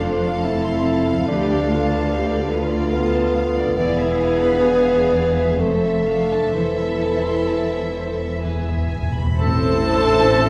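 Heard from further back in a reverberant recital hall, this solemn, melancholic excerpt of a slow romantic orchestral movement in A minor unfolds in rubato 3/4 at 62-74 BPM, with a rich, distant violin section carrying the melody over a second violin line, a mellow solo bassoon, woody violas, close-miked French horn chords, very quiet ringing harp arpeggios, and dark double basses beneath lush cellos, until round timpani enter at 8.4 s and clarinet, pure flute, cor anglais and a very quiet tuba join at 9.4 s as the harmony arrives on A minor.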